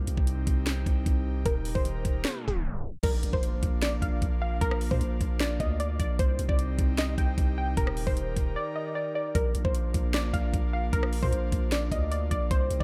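Up-front trap drums with a knocking kick, sharp snare and metallic hats drive this dreamy, triumphant half-time hip hop piece at 152 BPM in Bb major, over a deep, mellow 808-style bass and an airy, breathy pad with chorus, while a warbly, dusty lo-fi pluck melody with chorus, a low-pass filter and diffuse ambient delay enters at 1.5 seconds, and a tape stop and very quiet reverse cymbal lead into an electronic impact at 3.0 seconds before the drums briefly mute later on.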